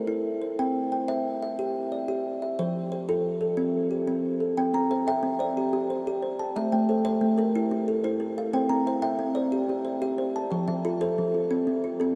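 Warm and rippling, this southern African traditional piece, cut from a longer work, turns an mbira-style interlocking cycle in 12/8 at 121 BPM in C mixolydian; an up-front, woody, boxy kalimba rings out in thumbnail-plucked arpeggios from 0.0 s, and at 4.7 s a dark, hollow-bodied second kalimba joins in the background with short, smooth, thumb-plucked arpeggios through an analog delay, all within a dreamy mix soaked in huge ambient reverb.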